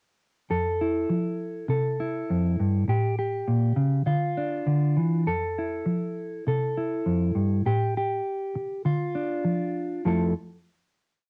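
A straight, easygoing 4/4 pulse at 100 BPM carries this short, sunny highlife piece in F major, with a carefree mood from start to finish. A lone mellow electric guitar plays the whole thing, entering at 0.5 seconds and ringing out until about 10.3 seconds. It is fingerpicked, with an alternating thumb and a palm-damped thumb holding down the bass while the upper strings fill in the harmony across a range from F2 to A4. The chords cycle gently through Fmaj7, A7 and Dm twice before the groove settles on a final Fmaj7 at 10.0 seconds. The guitar sits up front with a dark, clean tone, colored by a phaser and the soft haze of cassette tape. A moderate studio reverb frames it, and the home-recorded cassette sound gives the piece an intimate, homespun character.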